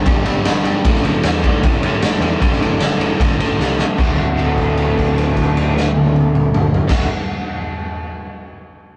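A biting, double-tracked overdriven guitar riff opens this swaggering, raw garage rock excerpt at 153 BPM in D major, joined almost at once by a growly, fuzzed picked bass and a gritty, saturated drum kit with a punchy kick and rolled-off top, until a drum fill at 3.6 seconds leads into a held note from 4.0 seconds, all of it heard as a rough rehearsal-room cassette recording with light reverb.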